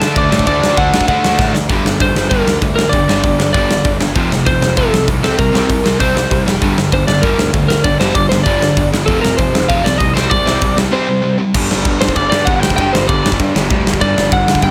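A bright, roomy sound with light reverb opens this aggressive, angry punk rock excerpt, which charges along at 195 BPM in a straight 4/4 and sits in G minor, tuned slightly below standard pitch. Up front, a big acoustic rock kit rings out in a bright stone room, with a punchy kick, a medium-tuned snare, hi-hat, ride and crash, and a quick drum fill at 1.4 seconds leads into the main stretch. A dark, slightly broken-up lead guitar carries the melody in the upper register, picked and compressed, over a wall of riffing guitars: a bright overdriven one, a tight distorted one that drops out at 11.5 seconds, and a very quiet, double-tracked fuzz guitar. Beneath them a growly picked electric bass, overdriven and fuzzed, holds the low end in the background. After a brief D at the start, the chords move among G, F and C, mostly as power chords, returning to G5 as the opening material comes back.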